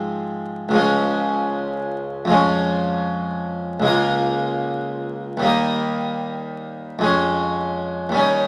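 Classical baroque-style suite movement in flowing 3/4 at 114 BPM with a rubato feel, where a solo French-style harpsichord, airy and brilliant with three sets of strings, sits up front spanning Db2 to F4 through radiant harmonies from Fm/Ab to Db/F, tuned to A4 = 441 Hz, set in a moderate large studio reverb with vinyl crackle, in this 8.5-second cut from a longer piece.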